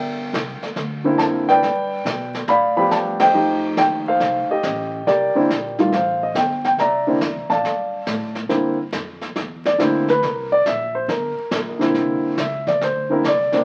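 Heard through the crackle of a very old 78 rpm record with moderate studio reverb, this playful, sophisticated jazz piano trio swings at 140 BPM in C mixolydian, an intimate, up-front grand piano with audible action noise carrying the melody over woody, bright pizzicato upright bass and a small-room brush kit with dark cymbals and a boomy kick, the band hitting an accent at 3.1 seconds before the piano takes a solo from 8.5 seconds in this cut from a longer piece.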